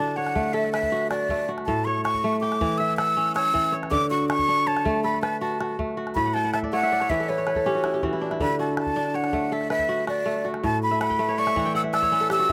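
Dry and close, this joyful, flowing cut of West African string and xylophone music moves at 107 BPM in a straight 12/8 in D major, with a breathy, mellow silver concert flute up front carrying the melody in an unsteady, tongued tone beside crisp, ringing fingerpicked kora arpeggios, both touched with slapback echo, while a small calabash sits lower in the mix and the kora breaks into fills at 6.3 and 10.9 seconds over a steady alternation between D and A.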